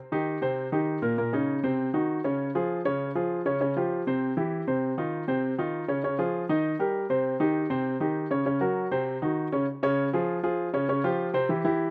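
A baby grand piano plays alone throughout this short cut from a longer piece of sunny, lively jazz, its natural, up-front tone ringing from Bb2 to Eb5 at a brisk 198 BPM in straight 4/4. The harmony moves quickly through colorful changes such as Cdim, Dbmaj7#11, Dbadd9 and Cm, and the passage shifts to new material at 9.7 seconds. Heard outdoors with barely any reverb, the warm sound feels close and unadorned.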